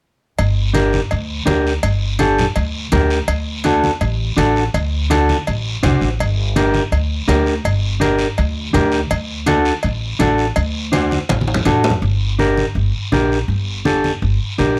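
A dark, clean, fingered electric guitar sits up front in this driving, passionate cumbia excerpt at 165 BPM in G harmonic minor, joined by a woody, thumpy pizzicato upright bass, low-tuned congas with thick skin and hard hands in the background, a raspy guiro that sounds distant in a large room, and ringing metal-shelled cowbell and timbales, close and dry, which drop out at 11.9 seconds, as a drum fill running from 11.3 seconds leads into a new section at 12.0 seconds, all captured with close, detailed microphones and little reverb.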